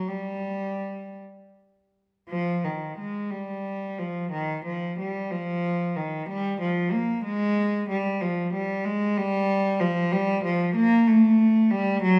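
In a rubato 6/8 at 53-64 BPM in dotted quarters, this grave, introspective fragment of a baroque-style suite movement gives a lone bowed cello, played in period style with light vibrato and a nasal, reedy gut-string tone, a low line between Eb3 and Bb3 that sits up front yet carries the lingering 1.4-second reverb of a recital hall across its 12.2 seconds.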